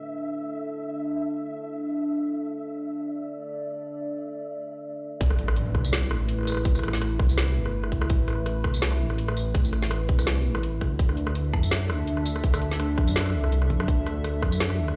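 Swung half-time drum and bass with a cinematic, heavy mood, cut from a longer piece: a dark, moody analog pad with chorus, phaser and sidechain pumping holds sustained chords throughout, joined by a faint flickering, grainy texture until a break at 4.5 s. Then the drop lands at 5.2 s with a background electronic impact, an up-front tight electronic kick, a drum kit of low-passed woody snare and metallic hats with rim click and tambourine, and a deep, rumbling, saturated detuned saw bass, the whole mix ringing through a large studio reverb as if played on a big sound system in a bare room.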